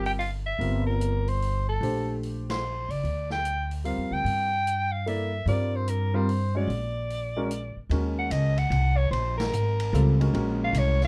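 Spiritual and cool, this short modal jazz waltz excerpt in swung 3/4 sets a raspy, growling soprano saxophone melody with scooped notes and vibrato up front over clear grand piano chords, a woody pizzicato upright bass, and a vintage kit with dark cymbals on hi-hat, ride and snare, with band accents at 2.4 and 9.3 seconds and the harmony shifting to a new section at 7.9 seconds, all in a dark production with light reverb.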